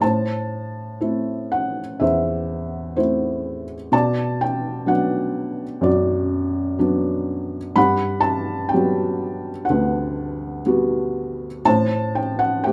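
Rubato and unhurried at 62 BPM in 4/4, this wistful, dark classical excerpt in A dorian features a solo felt-muted upright piano, mellow and boxy with audible action noise, sitting up front in light reverb as it moves from Am through Bm and Gmaj7 to Am7 across its 12.7 seconds.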